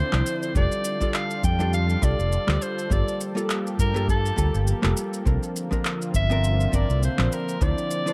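Echo-heavy, lightly reverberant digital ambience frames this wistful, warm sunset chillout excerpt at 102 BPM in a swung 4/4, where a breathy, whispered soprano saxophone carries the melody with vibrato and analog delay over a lush, detuned sawtooth pad with chorus, a dark, clean hollow-body jazz guitar roughened by 12-bit sampler grit and delay, an up-front, amped fretless electric bass, electronic handclaps and shaker with a small-room character, and a deep, overdriven electronic kick drum that enters at 0.6 seconds, all moving through Dm9, F69, Gm9 and C9sus4.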